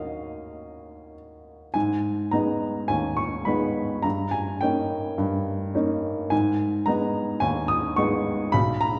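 A clear, woody upright piano carries this brief romantic character piece on its own, its audible action noise lending the playing an intimate, natural quality. Cut from a longer work, the excerpt sits in G# minor at 106 BPM in 4/4, with a rubato feel that gives the brooding, stormy mood room to breathe. The piano spans from B1 up to D#6, its short sustain keeping each note distinct even as the sound reaches the listener from further back in a reverberant scoring stage with a 1.9-second decay. An opening passage on Ebm gives way at 1.7 seconds to a new section that settles on G#m, moves to D#7/G, and returns to G#m at 6.3 seconds. The tuning rests at A4 = 439 Hz, and the piece runs for 9.0 seconds.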